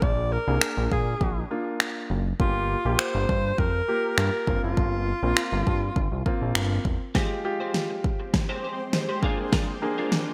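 This energetic, driving dance-pop excerpt opens with an up-front alto saxophone carrying the melody with vibrato and a trail of delay, over warm concert grand piano chords and a fat, saturated analog bass, both pumping against the kick. The deep house drum kit sits up front with a deep kick, fat snare and finger snaps, its tape-tinged sound wrapped in gated reverb. The saxophone drops out at 6.5 seconds and the bass at 7.0 seconds, as a build-up and drum fill carry the rest. A bright, twangy twelve-string electric guitar riff with ensemble chorus enters at 7.1 seconds, joined soon after by a shimmering, ethereal pad of sustained chords treated with phaser and its own reverb. The harmony moves from Bb7 through Gm7 and C7sus4 to Fmadd9 and back to Bb7, all within a bright 1980s-style digital production with light reverb.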